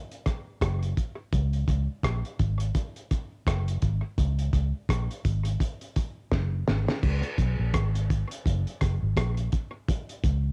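A dry, lo-fi home cassette recording of meditative, hypnotic roots reggae with a swung sixteenth feel, this fragment of a longer piece sets a cloth-damped, muffled drum kit, tape-saturated and gritty with a fat snare, tight kick, rim clicks, hi-hat and dark crash cymbal, against an up-front, foam-muted fingered electric bass that sounds round and punchy, with a drum fill at 6.3 s leading into a new section at 7.0 s.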